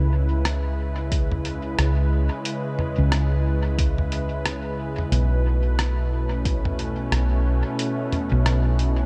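Ambient dub excerpt in C# minor at 90 BPM with a swung 16th feel, deep and hazy, where a round, dark hollow-body electric bass sits up front under a smooth, warbling analog pad drenched in lush chorus, moving from C#m7 to B9sus4 at 5.1 seconds, while a muffled, pitched-down sampler-style kit of hi-hat, rim click and toms trails dub echo from 0.5 seconds and a layered electronic kick thuds between 1.1 and 6.6 seconds in a dry mix.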